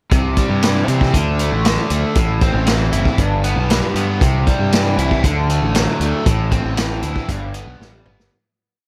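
Psychedelic rock with a dark, trippy mood, moving at 117 BPM in a straight 4/4 through a short pre-chorus that runs the whole piece. A crunchy overdriven guitar carries the riff in bright, double-tracked picked arpeggios coloured by flanger, sitting up front over a chord cycle of C, D5, Am and G. Beneath it, a fingered electric bass growls with fuzz and overdrive, punchy and up front as it drives a syncopated bass riff. A vintage acoustic drum kit with a punchy kick, medium-tuned snare, hi-hat and toms lays down a big rock groove, its sound mid-forward with a rolled-off top. The trio sits in a small room ambience, and the piece fades out from 6.3 seconds while a drum fill closes it at 7.8 seconds.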